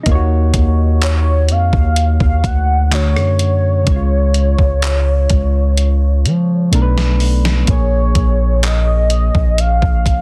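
A slow, straight 4/4 pulse at 63 BPM comes from a gated 80s digital drum machine, with thumpy kick, gated-reverb snare, rim clicks, handclaps and hi-hat up front, rolling into a fill at 5.8 seconds, all under a deep, long 808-style bass that sits forward in the mix. This is a sensual, longing piece of contemporary R&B in Bb minor, where soft, round electric-piano-like synth keys with chorus lay down chords moving from Ebm7 through Dmaj7, Db and Bm7 before settling on Bbm7 at 7.7 seconds. From 1.0 seconds a velvety, detuned synth lead with vibrato, chorus and tape echo sings high above, all inside a dry, dense and heavily limited modern mix cut from a longer piece.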